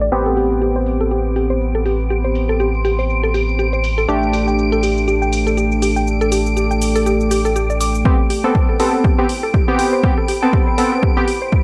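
A punchy, overdriven electronic kick drum arrives up front at 8.1 s to drive the build-up in this deep, warm deep house excerpt at 121 BPM in A minor, swung on the 16ths. Before it, round detuned analog keys stab and a woody FM mallet pluck spins arpeggios through analog delay, while a rounded sine sub bass, a dark sawtooth ambient pad in the background and a shimmering vintage string machine high above all pump with the sidechain over Am9 and Gsus2/A chords. Filter sweeps move across the pad and pluck, an overdriven electronic shaker and hi-hat ticks beneath, and light reverb and a cassette-tape, low-passed finish lend the recording a hazy glow.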